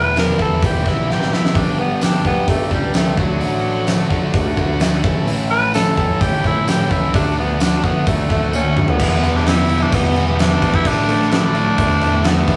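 Classic rock with a gritty, swaggering feel, led by a raspy, growling tenor saxophone solo up front over a biting double-tracked overdriven guitar riff, fuzz fingered electric bass, a huge arena drum kit with a fat snare and punchy kick, a very quiet shouting tonewheel organ with key click and slow rotary, a jingly tambourine in the background from 2.0 to 8.6 s, and a dark fuzz guitar riff joining at 9.0 s, all in a rough rehearsal-room sound.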